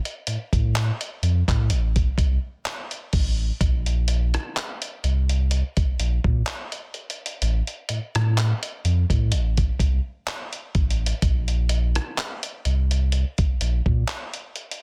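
Romantic and tender, this contemporary R&B excerpt moves in 4/4 with a light swing on the sixteenths. A gritty, sampler-style soul drum kit sits up front, with a thumpy kick, rim click, hi-hat and handclaps; its compressed, tape-hued sound carries the air of a large room and a softly clipped snare. A deep, full sub bass with an octave layer, sine- and triangle-toned with a fast attack and long sustain, enters at 0.3 seconds and holds until 14.0 seconds, all within a dry, dense and heavily limited modern master.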